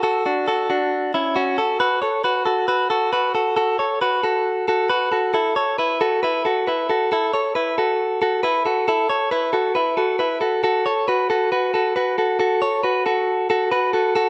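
A clean, picked electric guitar plays alone in this breezy, youthful indie pop fragment at 136 BPM in a straight 4/4, its compressed, up-front tone touched with spring reverb in an otherwise dry open-air setting as it moves from F#m through B5 and Aadd9 before settling on F#madd11 at 10.6 seconds.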